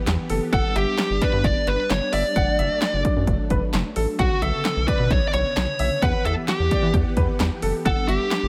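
Light reverb and a digital ambience frame this cool, driving synth-pop excerpt at 131 BPM in a straight 4/4. A punchy analog drum machine sits dry and up front with kick, snare, hi-hat and handclaps, while a rubbery, hollow square-wave bass with a resonant filter pluck and a dark edge holds the low end from 0.1 s. Beneath them, a vintage string machine voiced as violas spreads mellow, soft-attack sustained chords through an ensemble chorus. A dark, fuzz-distorted electric lead guitar carries the melody up front from 0.5 s with delay, and a clear grand piano adds a present second line, also with delay. The harmony moves through Emadd9, G, D/F# and Bmadd9 before circling back to Emadd9 and G, and the passage is cut from a longer piece.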